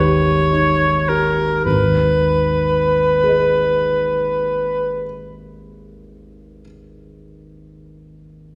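A clear oboe with light vibrato sings an elegiac, solemn romantic melody over a dark, mellow, vintage grand piano whose action noise is audible, the rubato duo slowing through the first 1.6 seconds before the oboe falls silent at 5.0 seconds and the intimate piano carries on alone until 8.6 seconds, all set back in the lush reverb of a scoring stage in this fragment of a longer classical piece.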